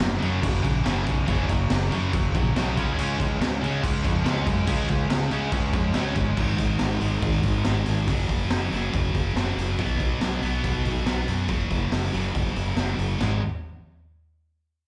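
An aggressive, menacing hard rock passage in G# minor opens at 141 BPM in a straight 4/4, with three distorted guitars, a fuzz-laden fingered bass and a raw garage drum kit all starting together. The guitars stack low riffs: a bright, double-tracked overdriven part with slapback echo sits in the background and drops out at 6.4 seconds, while a bright high-gain guitar and a sludgy, overdriven one carry on. Up front, the fingered bass growls with fuzz through an amp, and the kit brings a boomy kick, a high-tuned snare, hi-hat, toms and crash, all saturated and gritty with a rolled-off top. The harmony moves from F# to C#5, then into a second stretch cycling G#5, F#5 and B5, landing back on G#5 at 13.2 seconds as the parts fall away. Heard through a club PA with some room reverb, the sound is close and dry, and the clip is cut from a longer piece.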